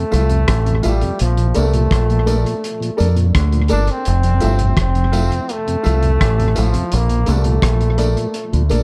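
This short, dark-toned excerpt has a dry sound with little reverb. It is sunny, uplifting roots reggae at 84 BPM in a straight 4/4, moving between Fmaj7 and Bbmaj7 for under nine seconds. A bright, distant trombone carries the melody with vibrato and dub echo, while a mellow tonewheel organ, with audible key click and a slow rotary speaker plus tape echo, fills the accompaniment. A deep, round fingered electric bass sits up front and dominates the mix. The cloth-damped drum kit sounds thuddy, muffled and gritty, with a tight kick, hi-hat and rim click touched by tape echo. In the background, a woody upright piano with audible action noise adds stabs, and a faint tambourine rounds out the percussion.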